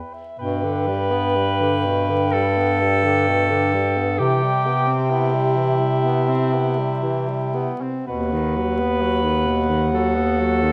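The warm bass clarinet stands out most, sitting present and up front as it anchors this elegiac, yearning classical piece for single-reed quartet. The clear, vintage alto saxophone opens alone at 0.0 seconds and carries the second line just ahead of the others, also placed up front. A distant, roomy clarinet sings the melody high above, while a mellow tenor saxophone with vibrato fills in the accompaniment beneath. The music moves slowly and freely in 4/4 at about 55-67 BPM with rubato, tuned to A4 = 439 Hz, and its harmony shifts from G to Cmaj7 at 4.2 seconds and then to B/D# at 8.1 seconds. A generous scoring-stage reverb and a layer of vinyl crackle lend the recording an aged, spacious air, and the passage is cut from a longer piece.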